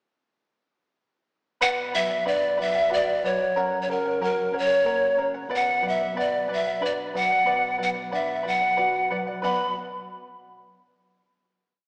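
This short, complete Andean folk piece for a small ensemble feels both festive and melancholic, moving in a straight 6/8 at 61 BPM counted in dotted quarters, in B harmonic minor. A breathy, reedy bamboo pan flute carries the melody up front, with song-like motif phrases, warm vibrato and a crisp, chiffy attack. Beneath it, the shimmering charango's double strings, some doubled at the octave, mix fingerpicking with rhythmic strumming of open chord shapes. Further back, a nylon-string guitar with fresh strings and a deep classical tone fingerpicks rock-style bass notes and chord figures, with an audible finger squeak. All three parts play together from 1.6 to 9.7 seconds over a simple Bm, F# and back to Bm progression, and a final chord lingers until 11.4 seconds. The whole ensemble sits in a wet concert-hall reverb, though the overall sound is small, as if heard through a modest speaker.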